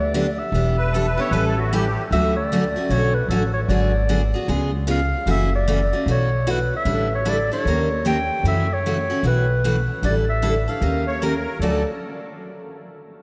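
Lively and charming, this brief cut from a longer acoustic string swing piece in D major moves at 152 BPM with a buoyant swung feel, a mellow clarinet singing the melody up front with light vibrato, subtone and scooped notes in a vintage jazz style. Beneath it a woody, thumpy upright bass with gut strings and a bright, full-bodied picked steel-string guitar, finger squeaks audible, carry the harmony, while a reedy, shimmering musette accordion adds a second line from 0.8 to 2.0 seconds and again at 11.1 seconds. The dreamy mix is soaked in a cathedral reverb, and the chords wander from Gmaj7 through sus4 dominants and Eb7 before settling on Dmaj7 at 11.6 seconds.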